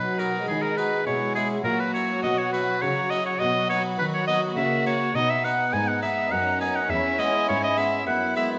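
This classical, baroque-style concerto movement moves in a straight triple metre, with a brilliant, festive mood in this short passage cut from a longer piece. A bright, present oboe carries the solo melody up front with light vibrato, while a lush, very quiet studio violin section also carries the melody, higher up, with a soft attack. A chamber violin section plays an even, smooth second line, and a chamber viola section fills in the accompaniment with a focused tone. Beneath them, a plucked French-style harpsichord with a single set of strings sits mid-forward in the accompaniment, and a distant cello section supplies an expressive bowed bass. The harmony moves through B, C#m7/B and F#7/A#, returns to B, passes through F#7/C# and B again, and arrives on E at 6.9 seconds, all heard in a recital hall with moderate reverb.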